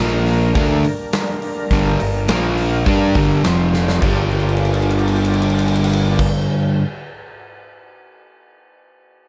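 A crunchy, double-tracked overdriven guitar riff opens this brooding, gritty blues rock and southern rock excerpt in G minor at 104 BPM together with fuzz-soaked fingered bass and the thick, key-clicking chords of an overdriven tonewheel organ set back behind chorus vibrato and slow rotary speaker, while a huge, punchy arena drum kit enters at 0.3 seconds and throws in fills at 3.7 seconds and from 4.3 seconds, all moving through Bb5, Gm and F5 to Gm7 in a moderate club reverb.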